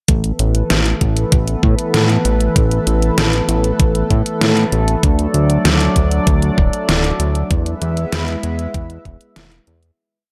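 A steady 4/4 groove at 97 BPM opens this short synthwave piece, built on a knocking, overdriven electronic kick and an 80s-style machine backbeat of closed hi-hat and deep snare, both sitting up front with a small-room character. Beneath them, a fat analog bass drives in eighth notes with a detuned sawtooth tone and a filter sweep, ranging from D1 to A2. A shimmering, retro pulse-width pad holds sustained chords over the top, its slow attack, chorus, ring modulation and moving notch giving it a mellow glow while sidechain pumping makes it breathe against the beat. The harmony moves from Asus2 to D at 5.0 seconds and then to E at 7.5 seconds, lending a dreamy, uplifting lift to the single verse. Light reverb surrounds the mix, and the whole piece fades out from 6.7 seconds to its close at 10.0 seconds.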